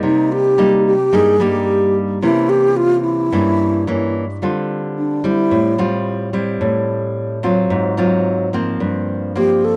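A breathy, wooden-headed alto flute sings an unsteady, tongued melody with vibrato over full-bodied fingerpicked nylon-string guitar, complete with finger squeak, in this intimate, wistful bossa nova excerpt at 109 BPM, settling into D minor at 4.4 s, where the flute's solo begins, before the flute drops out at 5.8 s and returns briefly at 9.4 s, all bathed in moderate plate reverb and the warbling pitch drift of worn cassette tape.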